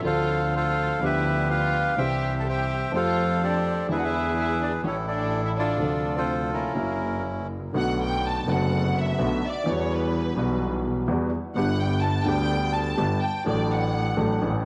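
A rubato 4/4 pulse at 125 BPM carries this passionate, tense tango in D minor, cut from a longer piece and set in a wet echo-chamber reverb. A reedy, boxy bandoneon sings the melody up front until 7.5 s over an intimate grand piano with audible action noise and a clear, focused bowed double bass with vibrato, while a smooth studio violin section with light vibrato plays a second line and then steps forward for its solo from 7.7 s. The harmony moves from Dm7 through G7/D, E7 and F#7 before settling on Bm7, Emadd9, G and D/A in the second half.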